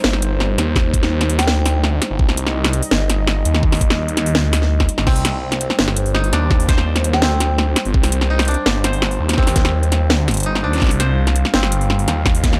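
A dry, gritty slice of spacious, cinematic half-time drum and bass in C minor at 167 BPM, where a swirling, detuned saw bass with phaser and a knocking electronic kick entering at 0.8 seconds sit up front beside a kit of cracking snare, metallic hats and crash, while a moody analog pad pumps in the background, a crystalline FM bell with tape echo glints briefly, and a woody koto carrying 12-bit sampler grit plays arpeggios from 5.1 seconds.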